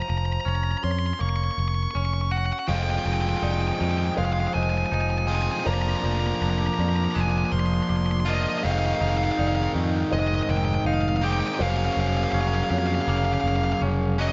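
A light reverb softens this short, cinematic post-rock fragment, and its top end is rolled off, giving the whole a dusky, cathartic glow at 81 BPM in a straight 4/4. Up front, a nasal lead guitar with a parked wah sings the melody in a dark, overdriven voice, its notes trailed by a slapback echo. Beneath it, a felt-muted upright piano adds mellow, intimate arpeggios with audible action noise, while a twangy, compressed clean electric guitar picks its own arpeggios further back, both also touched by slapback echo. A growly, punchy picked electric bass anchors the low end from the first moments, and at 2.7 seconds a bright, distorted electric guitar joins up front with a riff. The harmony moves over a constant F in the bass, from Gbmaj7/F through Fm9, Bb9/F and Abmaj7/F before returning to Gbmaj7/F, lending the passage a suspended, yearning quality.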